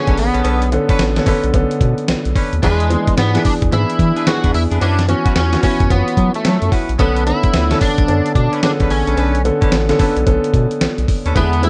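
This dry, close-sounding clip of new jack swing R&B struts with a confident, slick air at 110 BPM in B dorian, its sixteenth notes pushed into a 63% swing. Up front, a gritty, sampler-style drum kit pairs a thumpy kick and fat snare with hi-hat, all bathed in gated reverb, while a round, deep analog bass with a nasal, dark edge and fast attack holds down the low end. A polished grand piano carries the accompaniment through Bm9, E7 and F#7sus4 before returning to Bm9 at 7.0 seconds. The melody comes from a twangy, slightly broken-up electric guitar, fingered and compressed, shimmering with analog chorus. Distant, roomy jazz-style horns add stabs, and a metallic cowbell, very quiet in the mix, joins at 0.4 seconds.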